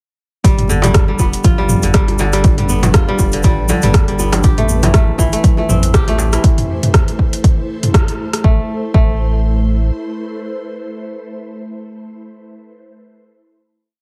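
Afro house with a hypnotic, driving pulse and a light swing, opening straight into a drop where an up-front overdriven four-on-the-floor kick and a deep house kit of metallic hats, rim clicks and low toms sit over a round sine sub bass with long gliding notes, while quiet, compressed congas, a grainy hand-played tube shaker and a rattling, band-limited djembe weave cross rhythms in the background. A crisp fingerpicked kora rings through a 12-step loop that drifts against the bar, carrying dub echo and sidechain pumping like the bass and pad, as an ethereal, detuned sawtooth pad with chorus, phaser and a noise layer swells in from 1.8 seconds. After a band accent at 7.9 seconds the kit falls away at 8.4 seconds, the kick following at 9.1 seconds and the bass at 9.9 seconds, leaving the pad and kora to hold a final A minor add9 chord until the pad fades at 12.0 seconds.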